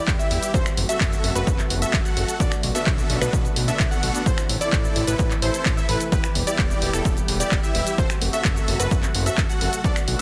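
The overdriven electronic kick drum sits up front in this festival progressive house excerpt, punchy and layered, re-recorded in a large room, driving a straight 4/4 at 129 BPM with an anthemic, powerful mood. Around it, a house drum kit of finger snaps, handclaps, hi-hat and shaker adds a tape-warm, small-room texture, while a fat, nasal analog bass built from detuned saw and square waves pumps against the sidechain from 0.1 seconds. Huge, bright supersaw chords play a riff with subtle chorus and tape echo, and a catchy plucky unison lead spins arpeggios with a filtered snap, vibrato and its own tape echo. Deep in the background, a lush, warbling vintage pad holds sustained chords with chorus and a slow attack, breathing with the same pumping. The harmony moves through Em, F#dim, Bm7 and Am in light digital ambience, all pressed into a dense, heavily limited modern master.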